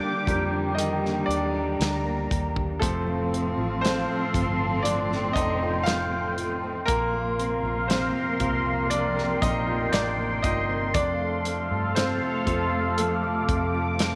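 A tender, hopeful pop ballad excerpt in a slow, straight 4/4, led by a clear, polished baby grand piano that solos throughout over a bright, detuned sawtooth pad with chorus and a lush, bowed cello section carrying a second line through tape echo. A very quiet fingerpicked steel-string guitar adds full-bodied arpeggios with finger squeak, while a dark, round, foam-muted electric bass and a punchy, up-front studio drum kit of kick, snare and hi-hat enter at 0.3 seconds. Light reverb gives the whole a small-room ambience as the chords move from Ebmaj7 to F, Bbsus2 and back to F.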